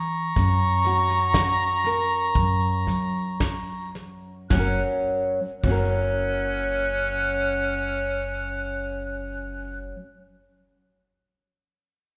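Acoustic folk for a small band, peaceful and pastoral in F# major at a slow 53-63 BPM, where an airy wooden flute with vibrato carries the high melody over a clear harmonica second line, fingerpicked nylon-string guitar, woody pizzicato upright bass with gut strings, and a dark brushed drum kit with a fat snare that plays from 0.4 to 5.9 seconds, the tempo slowing over the opening 4.5 seconds and the sound set in a moderate scoring-stage reverb in this short cut from a longer piece.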